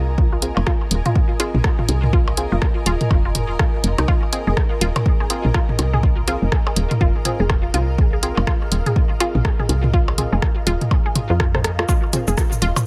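Minimal techno with a hypnotic, quirky mood, this short excerpt rides a swung sixteenth-note groove over a single F minor chord. A punchy, tape-warm electronic kick sits up front with a woody, round FM bass that pumps against it, while a small-room analog drum machine adds hi-hat, rim click and shaker, and electronic percussion blips and toms trail through analog delay. The riff comes from a juicy, squelchy resonant blip pluck, bright and detuned, coloured by chorus, gritty 12-bit sampler crunch, tape echo and sidechain pumping. Underneath, a muted, deep dub chord stab sits in the background with analog chorus and delay, and a cloudy, evolving granular pad hovers high in its own reverb, also breathing with the sidechain. The mix is dry on the whole yet heavy with echoes, and a brief drum fill from 11.5 to 11.9 seconds marks the turn.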